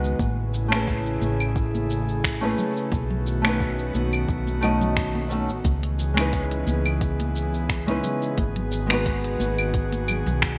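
From the outset, a dark, thumb-plucked flamenco guitar lays down accompaniment trailed by digital delay in this relaxed, smooth sunset chillout excerpt, alongside an airy, breathy pad that holds slow-blooming chords shimmering with chorus. A round, hollow-body electric bass sits low with a tube-saturated, amped tone, while an up-front electronic R&B kit of crisp hi-hat, claves, finger snaps and shaker carries overdrive and gated reverb over a lightly swung sixteenth-note feel. From 0.2 seconds a soft electronic kick, also overdriven, anchors the groove, and close, dry congas played with hard hands sit far back in the mix. The harmony moves through Amaj7, B7, C#m7 and G#m7, and a moderate plate reverb and bright 1980s-style digital production give the whole passage a polished, glossy sheen.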